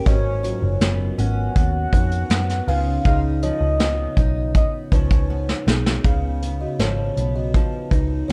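Soft brushed drums sit up front with a punchy kick and a gritty, sampler-worn texture, carrying this dreamy, hazy indie and bedroom pop excerpt at a straight 80 BPM in 4/4 and rolling into a fill from 5.3 to 6.0 seconds. A round, foam-muted electric bass anchors the low end beside a full-bodied fingerpicked acoustic guitar with faint finger squeak, subtle chorus and vibrato, while a woody, buzzing kalimba rings out a second line through analog delay. Over G#m7 moving to C#9, a lush, detuned octave-layered synth lead sings the melody until 5.6 seconds, all wrapped in a small room ambience.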